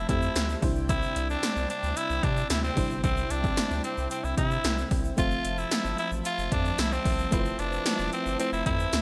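A straight 4/4 beat of punchy 1980s electronic drums with a gated snare, metallic hats and tambourine drives this uplifting, nostalgic pop excerpt, where a breathy, raspy tenor saxophone carries the melody up front over glassy, bell-like FM electric piano, a brassy detuned analog pad in the background, a round, deep analog bass and a grainy tube shaker, all set in a bright digital production with light reverb.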